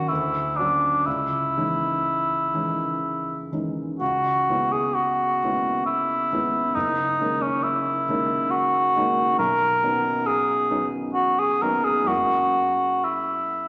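A wet recital hall reverb with a 1.6 s decay surrounds this short impressionist classical duo, cut from a longer piece. The cor anglais sits up front with a dark, smooth-topped tone, carrying the melody in a classical solo style between C#4 and A#4. Lower in the balance, the grand piano has a warm, intimate, natural sound in which its action noise can be heard, and its accompaniment spans F#1 to F#4. Both instruments play from start to finish, in C# dorian at 60-69 BPM in 3/4, and the rubato feel gives the music a hazy, wistful drift. The harmony moves from Dmaj7 and C#madd9 into C#m7 at 4.0 s, then through F#13 and Badd9 before arriving on F#9.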